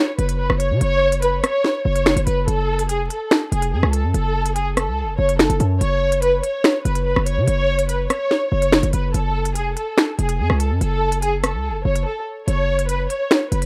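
A dry, rough home-demo mix dusted with vinyl crackle frames this menacing, cold half-time drill hip hop excerpt, where a dark, lush studio violin section bows an expressive melody with vibrato and portamento from the start, joined at 0.2 seconds by a punchy, heavy 808-style bass with a noisy edge and an up-front electronic drum kit of sharp snare, crisp hi-hats, finger snaps and rim clicks, all over brooding F#m and C#sus4/F# chords, with a brief break at 12.1 seconds before the section returns at 12.5 seconds.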